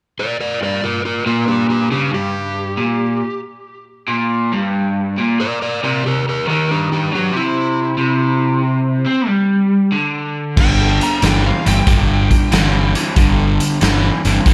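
A close, up-front mix sits in light reverb, with the slide guitar's warm, overdriven voice set alongside a crunchy, bright, double-tracked rhythm guitar. This gritty, driving cut from a longer blues rock and southern rock power-trio piece moves at 92 BPM in 4/4 with a 68% swing on the eighth notes, tuned slightly sharp to A4 = 441 Hz. The fingered slide guitar carries the melody, ranging from D4 up to Bb5, while the picked rhythm guitar's riff sits lower, from G2 to C4, over a progression of G5, C7 and Csus2. At 10.6 seconds the music returns to G5 and a new section begins as a picked, fuzz-laden electric bass anchored on G1 arrives with a raw garage drum kit. The kit has a dark, smooth, rolled-off top in a stone-room ambience, with a punchy kick, a medium-tuned snare, hi-hat and crash cymbal. The slide guitar drops out at 12.9 seconds, leaving the riff, bass and drums to drive on to the end of the cut.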